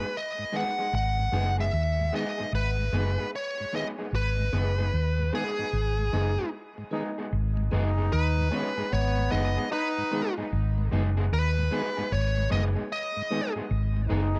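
Reggae at 75 BPM in G# minor, serious and meditative, with a swung sixteenth-note feel in 4/4 and the whole passage resting on a G# minor chord. A smooth, overdriven lead guitar carries the melody up front, its picked, dark tone trailed by dub echo, while an electric guitar at the edge of break-up plays accompaniment in a lower register, fingered and slightly gritty, with its own dub echo. A mellow tonewheel organ fills out the low middle with a round, clean sound, key click and the gentle vibrato of a slow rotary speaker. The hollow-body short-scale bass enters at 0.9 seconds, fingered and punchy, the most prominent part in the mix. The band plays an accent from 4.1 to 7.3 seconds, during which a clear trombone joins at 6.1 seconds with a second line, its smooth top and light vibrato also carrying dub echo, and a second section begins at 7.3 seconds. Light reverb sits over the ensemble in this passage cut from a longer piece.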